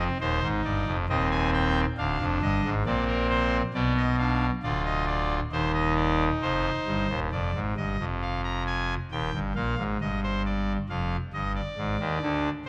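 A pipe organ on a brassy, bright trumpet stop opens this solemn fragment of a baroque-style three-voice fugue, with a crisp chiff at the start of its notes and a baroque voicing placed up front. The single instrument plays alone throughout, spanning a broad compass from D1 up to Bb5 in a steady, straight 4/4. For the first 7.3 seconds the harmony moves through Cm/Eb, Dm7b5 and Bdim before returning to Cm/Eb. A second passage then shifts to Fm, Eb and Ddim/F, running until the cut at 12.7 seconds. Close, detailed microphones capture the organ's speech, while a moderate concert hall reverb with a 2.3-second decay lends the serious mood a sense of space.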